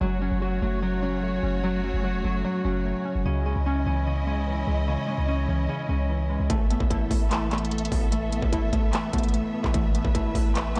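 Set at 148 BPM in 4/4 with a half-time feel, this menacing, eerie trap excerpt moves over F#m, C#madd9 and Asus2. A deep, boomy 808-style bass with a sine body, a noise layer and a fast, decaying attack sits up front from the start, under warbling lo-fi synth keys built from detuned triangle, sawtooth and square tones with a sub octave, ring modulation, chorus and a filter sweep, giving the accompaniment a nostalgic, mellow haze. A lush studio string section holds sustained bowed chords with vibrato, a soft attack and a smooth top, while a Celtic harp rings out fingerpicked arpeggios through a low-pass filter and delay. At 6.5 seconds an industrial drum kit arrives up front with a distorted electronic kick, smooth hi-hats and handclaps, re-recorded in a small room. Light reverb and digital ambience surround the parts, a tape stop marks the clip, and the overall sound is rolled off above 10.5 kHz.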